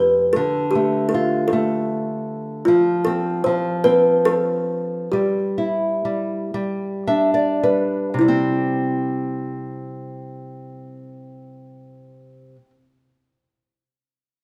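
Tender and gentle, this children's lullaby fragment drifts in 6/8 with a rubato feel at roughly 33-52 BPM in dotted quarters, set in C major. An up-front kalimba carries the melody with a woody, ringing, airy thumb-plucked tone, while a small, fingerpicked nylon-string guitar accompanies beneath it. The music slows from 2.7 seconds, the guitar adds a fill from 6.5 to 8.2 seconds before settling on a C chord, and a wet recital-hall reverb surrounds the recording.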